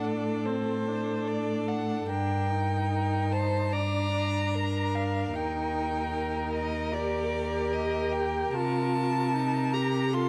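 This classical slow romantic movement for string quartet, taken from a longer piece, unfolds in a solemn, melancholic mood with a flexible, rubato feel in 4/4. The first violin carries the melody with a warm, close tone, shaping its line with vibrato, soft attacks, portamento and expressive phrasing, while the second violin sings a rich second line beneath it in the same bowed, sliding manner. The viola supplies a focused accompaniment from a more distant placement, and the cello anchors the bass with a clear, smooth, even sound that sits up front. All four players are heard together from the opening to 10.3 s, moving through a D7 chord over A, then G minor at 2.1 s, E-flat major seventh at 5.3 s and C minor at 8.5 s. Close, detailed microphones and a light touch of reverb give the ensemble an intimate presence.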